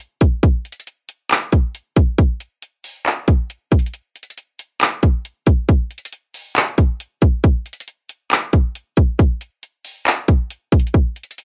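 Hip hop at 137 BPM in a half-time 4/4 feel, this blissful, floating excerpt from a longer piece puts an electronic trap drum kit up front, its hard-clipped kick, metallic hi-hats and handclaps carrying a tape-softened cassette tint in a lightly reverberant home recording, with a brief break at 3.9 seconds before the beat continues to 11.4 seconds.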